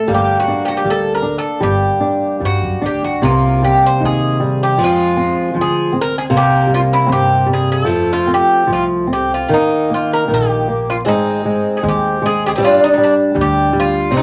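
A metallic, double-strung Irish bouzouki carries the melody up front in this passionate, longing fado-style ballad excerpt, with a shimmering, octave-doubled twelve-string acoustic guitar picking a second line with audible finger squeak, a dark, thumb-plucked flamenco guitar accompanying close by, and a woody pizzicato upright bass underneath, all set in a wet small room with vinyl crackle as the rubato harmony moves from G harmonic minor into C minor at 3.2 s.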